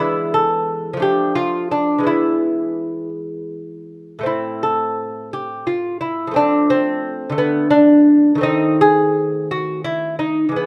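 A fingerpicked solo lute with delicate gut and double strings, some doubled at the octave, sits up front in this solemn, grave baroque-style dance in 6/8, moving with uneven beats and rubato through shadowed harmonies from E and Am to a closing D#dim7, all wrapped in a dark production with light reverb, in a brief fragment cut from a longer piece.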